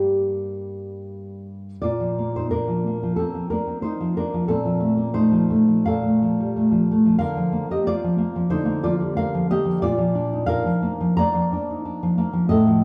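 Rubato phrasing and uneven beats give this romantic solo classical guitar piece a wistful, passionate sway, heard as a short cut from a longer work. The nylon-string guitar sits up front with a dark, full-bodied tone, thumb-plucked notes and audible finger squeak. It opens on a brief G minor passage before settling into B-flat at 1.8 seconds, with the moderate reverb of a recital hall or church lending the sound a natural bloom.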